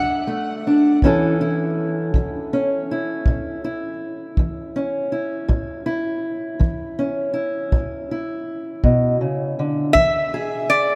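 Gritty and rollicking, this short cut from a longer acoustic country blues piece moves at a slow 54 BPM in 12/8 with a straight feel, set in A major. A fingerpicked steel-string acoustic guitar carries the accompaniment throughout, its dark, woody, boxy parlour tone and old strings sitting up front. A lap resonator guitar played with slide and fingerpicks takes the melody in brief phrases at the opening and again from 9.9 seconds, its metallic, nasal voice also placed close. Between 1.0 and 10.1 seconds a kick drum played with brushes adds a punchy yet smooth pulse, its rolled-off top and studio-room character giving it a dark weight. The whole performance is bathed in a heavy cathedral reverb with a long six-second decay, placing the instruments in a vast, echoing space as the harmony moves from D to A and finally to E.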